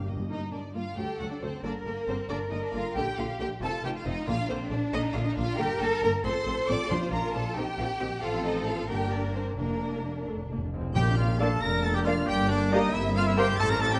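This excerpt from a quick classical-period symphony movement moves at 91 BPM in a straight 6/8, graceful and lively, starting in G minor and turning to Bb major from 5.6 s. A rich, focused violin section with vibrato carries the melody high over a second violin line, while warm, expressive violas fill the accompaniment and cellos with soft attacks and portamento join a double bass section that sits up front to anchor the bass. Timpani struck with medium mallets sound close and dry in the background, with a fill at the very start and another leading into the closing passage. A dark French horn section sounds a brief chord at the opening and returns with sustained chords from 10.9 s, when a clear trumpet adds soft-edged stabs in the background. The winds arrive in that final passage: a lightly vibrant oboe, a very quiet clarinet and bassoon, and an airy, distant flute ensemble add their lines. 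A moderate scoring-stage reverb gives the orchestra a natural glow with a smooth, rounded top end.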